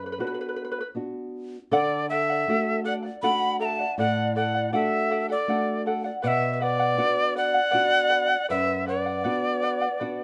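A moderate studio reverb gives this short cut from a longer Andean folk piece a measured sense of space. It moves in a steady three-beat metre, and its mood is both melancholic and festive. The charango leads the opening with shimmering, fingerpicked double strings, some of them octave-doubled, while a small, dark nylon-string guitar fingerpicks beneath it with audible finger squeak. At 1.7 seconds a bright cane quena enters up front with the melody, close-miked and expressive, its airy tone carrying vibrato, a crisp attack and chiff. Alongside it, a mellow, hollow, polished wooden pan flute plays a second line with lifted highs, vibrato and tape echo.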